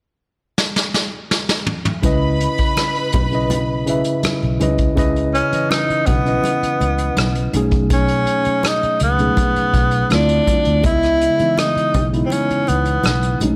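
Lush 1970s-style soul in C# minor at 82 BPM, cinematic and bittersweet, opening with a drum fill on a vintage brush kit before the mellow, slightly out-of-tune tine electric piano, round foam-muted fingered bass and ringing background congas arrive at 2.0 seconds, joined briefly by a woody, vibrato-laden string section. At 5.3 seconds a breathy, whispered tenor saxophone takes the melody up front with soft attacks and scooped notes over chords moving from C#m9 through B13 and Dm9. The sound sits in light studio reverb, and the passage is cut from a longer piece.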